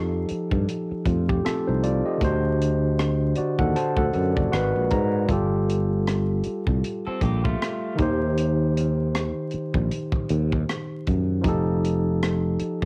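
A barky, lightly overdriven tine electric piano and a growly fretless bass open this sultry, introspective neo-soul R&B cut from a longer piece. The piano sits up front through a combo amp, coloured by cassette tape and plate reverb, while the sustaining bass comes in bright, direct and amped with transformer saturation. A tight funk kit of hi-hat, kick and rim click follows almost at once, mid-forward in a small room with a swung sixteenth-note feel. The piano takes a brief fill from 4.1 seconds, and the harmony moves through lush ninth, seventh and sixth chords. Between 7.1 and 8.0 seconds, a compressed, slightly broken-up guitar through a small old amp adds a picked, lo-fi second line bathed in tape echo. The whole take has the intimate feel of a home cassette recording, with vinyl crackle and light reverb around it.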